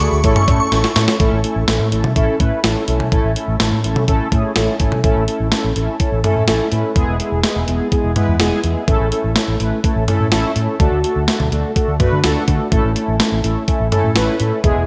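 Bright 1980s-style digital production sits in a moderate, lush hall reverb, giving this upbeat yet wistful synth-pop excerpt a polished digital ambience. At 125 BPM in a straight 4/4 in A major, a clean 12-bit drum machine sits up front with a thumpy kick, medium-tuned snare, hi-hat, cowbell and toms, overdriven and treated with gated reverb, and it plays a fill from 0.7 to 1.2 seconds. A vintage muted fingered electric bass lays down a dark, round, punchy foundation. Mellow synth brass, sawtooth-edged with ring modulation, a filter sweep, chorus, vibrato and shimmer reverb, carries the sustained accompaniment. A dreamy FM bell with a halo rings a decaying high C#6 only at the very start, ending by 0.8 seconds through ensemble chorus, digital delay and shimmer reverb, while the harmony moves from A to E, back to A, then to D and home to A.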